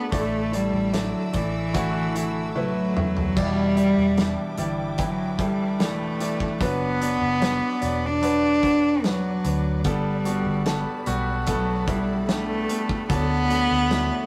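A straight 4/4 pulse at 74 BPM carries this tender, emotional pop ballad, heard as a cut from a longer piece. Up front, a single cello sings the melody with a soft attack, light vibrato and an airy, intimate bow played sul tasto. A bright concert grand piano with deep bass and short sustain plays the accompaniment. A fingerpicked steel-string dreadnought guitar adds very quiet, full-bodied arpeggios, and a clear, focused studio string section holds sustained chords in the background. A foam-muted, round electric bass and a loose acoustic drum kit with punchy kick, medium-tuned snare and dark cymbals enter at 0.1 s; a drum fill from 2.6 to 3.4 s leads into the next section as the harmony moves from Asus4 through Em7, Bm and Gadd9 to D. Moderate reverb and the rough, saturated character of a rehearsal-room recording colour the sound, with the kit's small room audibly pumping.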